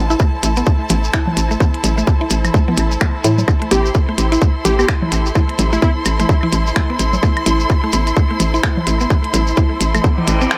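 Minimal techno at 128 BPM in A minor with a swung, cool and quirky feel, built on an up-front tight electronic kick and a hollow, bouncy FM bass that pumps along with rich bowed studio strings and a woody mallet-like synth pluck with tape echo, while clicky hats and finger snaps, a grainy shekere and dry background toms, claves and congas fill out the groove, a catchy detuned plucky lead with analog delay appears briefly from 3.7 to 5.9 seconds, and a reverse cymbal enters at 10.2 seconds in this echo-heavy mix.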